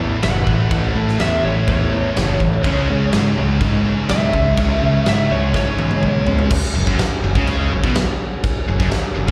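This hard rock passage, cut from a longer piece, drives forward at 124 BPM in a straight 4/4 with a powerful, anthemic mood, moving from A through C#5 to F#5. Three rhythm guitars share the riff: a very quiet overdriven guitar, an equally faint sludgy distorted guitar, and a bright, scooped, double-tracked high-gain guitar. Underneath, a fuzz-laden fingered electric bass sits round and up front, while a big acoustic drum kit with punchy kick, fat snare and bright cymbals comes in at 0.2 seconds and throws in a fill from 5.5 to 6.5 seconds. A twangy, compressed lead guitar with slapback echo and analog delay plays a solo melody up high until 6.5 seconds, when the music moves into a new section. A mellow, dark tonewheel organ with key click and slow rotary speaker holds very quiet sustained chords throughout, and the whole mix sounds like a live gig heard through the venue's PA, with recital hall reverb around it.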